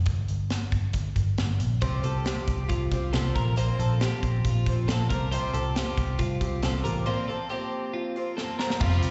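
Breezy and nostalgic, this jangly indie pop excerpt at 137 BPM opens on a dark, round, foam-muted picked electric bass and a punchy, high-tuned, up-front drum kit, joined at 1.8 seconds by a boxy, shimmering, octave-doubled picked twelve-string acoustic guitar with slapback echo and by twangy, compressed twelve-string electric guitar arpeggios carrying digital delay and slapback echo over Csus4 and Bbsus2 chords, all sounding like a live gig heard through the venue's PA with recital hall reverb and a dulled top end, before a drum fill at 8.4 seconds.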